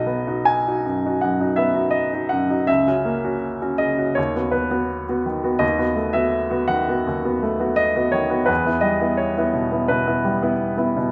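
A clear, polished baby grand piano plays alone and up front in this lyrical, hopeful romantic character piece, moving with a flexible rubato through a short excerpt from a longer work, its harmonies drifting from B major toward an E minor chord at 8.5 seconds while a wet recital hall reverb surrounds the sound.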